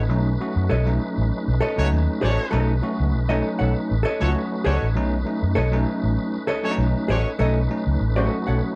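Funk with a playful, easygoing strut in a straight four, this short excerpt is cut from a longer piece and opens on a B9 chord. A round, foam-muted electric bass sits up front from the very start, dark and amped, anchoring the low end. A tonewheel organ holds sustained chords underneath, full and lightly overdriven through a slow rotary speaker with chorus vibrato, while a bell-like tine electric piano adds bright, clean stabs from 0.1 seconds. A hollow-body jazz guitar comes in at 0.7 seconds with picked, compressed accompaniment, its clean, dark tone placed close and up front. A warm, tight horn section adds a distant, roomy second line from 1.8 to 7.3 seconds, and the whole sits in a dark, warm production with light reverb.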